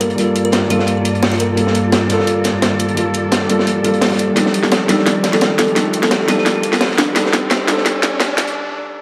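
Liquid drum and bass at 172 BPM in G minor, this dreamy, rolling excerpt builds throughout, moving from Gm9 to F13 as a soft, mellow felt-muted upright piano, up front and treated with a filter sweep, carries the accompaniment beneath distant, bowed chamber strings with expressive vibrato. Two up-front drum kits drive it: an electronic one with a cracking, overdriven snare and bright hats, and a gritty, saturated breakbeat kit with a high-tuned snare and rolled-off top. A drum fill arrives at 4.4 seconds before a brief break at 8.6 seconds, while a woody, ringing kalimba plucks the melody in the background through digital delay and a very quiet electronic riser enters at 2.4 seconds, the whole set in a lush hall reverb within a dark production.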